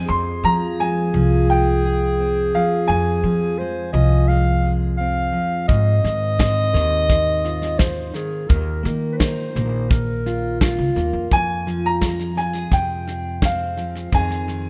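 An upright piano with a woody, long-sustaining tone opens this haunting, intimate acoustic folk piece, playing a high melody over fingerpicked steel-string dreadnought guitar and a thumpy, gut-strung pizzicato upright bass. A dark, smooth-topped clarinet joins almost at once with a classical-style second line, sitting up front once the piano drops out at 4.2 seconds. At 5.7 seconds a soft brush kit enters with a punchy kick and medium-tuned snare, as the harmony moves from F minor through Ab6 to Ebsus2. The piano returns at 11.3 seconds to lead a brief second section that settles back on F minor before closing on Ab over F. The small, lightly reverberant room and rough home-demo mix give this cut from a longer piece a close, unpolished intimacy.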